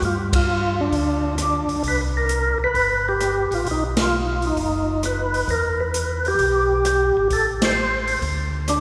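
A percussive, lightly overdriven tonewheel organ carries the bluesy melody up front with slow rotary swirl and chorus vibrato over a round, dark organ bass and an open jazz kit with dark cymbals and a boomy kick, swinging greasily at 132 BPM in G major through a G5, C5, B, Em, Am progression, with band accents at 0.2, 3.9 and 7.5 seconds ringing into a wet church reverb in this soul jazz organ trio excerpt.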